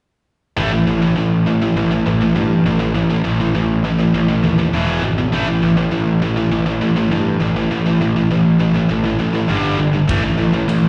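Heard through a venue's PA in a recital-hall space with a dulled top end, this dark, heavy metal fragment cut from a longer piece sets an up-front, high-gain guitar with slapback echo and a growly, fuzz-laden picked bass against a tighter distorted guitar in the background, the three churning through A5, E5 and G5 chords before a tight metal drum kit with bright china cymbal and kick drum enters at 10.1 s.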